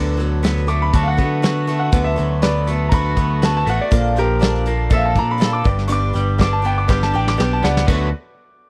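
Jangly and hopeful, this short excerpt of folk rock and heartland rock moves at 121 BPM in a straight 4/4, centred on D major with a turn through Bbmaj7 and G before settling back on D6. A clear, polished baby grand piano carries the melody high in its range from 0.7 seconds, taking a solo across the passage, while a soft brush kit with dark cymbals, a medium-tuned snare and a punchy kick sits up front, adding a drum fill from 6.9 seconds. Underneath, a growly, amped electric bass is picked with a punchy attack, and a shimmering, octave-doubled twelve-string acoustic guitar picks a boxy accompaniment with audible finger squeak. A twangy electric guitar at the edge of break-up plays a riff alongside it. From 3.9 seconds a worn, woody upright piano, slightly detuned and very quiet, joins with brilliant accompanying notes, all set in a small room reverb that keeps the sound dry and close in a 1970s studio manner.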